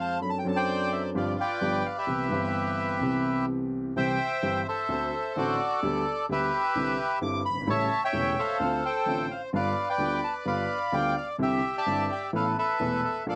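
Dry, close and detailed, this nostalgic, playful tango excerpt in C major moves at 129 BPM in a rubato 4/4, with a reedy, vintage, band-limited bandoneon carrying the melody up front while a dark baby grand piano, mellow, smooth and long-sustaining, plays the accompaniment throughout, passing through D7/F#, G7 and Cmaj7 before settling on Asus2 at 12.3 seconds.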